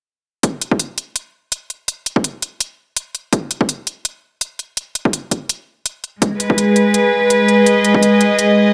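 This is a short excerpt cut from a longer half-time drum and bass piece at 166 BPM in 4/4, with a light swing on the sixteenths, set in G# minor over a G#m chord and tuned to A4 = 436 Hz. Its mood is cinematic and tense. An electronic kick and crisp hi-hats enter together at 0.4 seconds, sitting up front with a tape-warm, produced character re-recorded in a large room, the heavy kick high-pass filtered along with its room sound. At 6.2 seconds a rich chamber string section arrives with sustained bowed chords between G#3 and D#5, played sul tasto with a soft attack for a pure, floating tone. Close and up front, the strings pump against a sidechain and stand as the loudest part, carrying on to 8.7 seconds. A moderate, lush hall reverb with a 2.4-second decay gives the whole short passage a sense of depth.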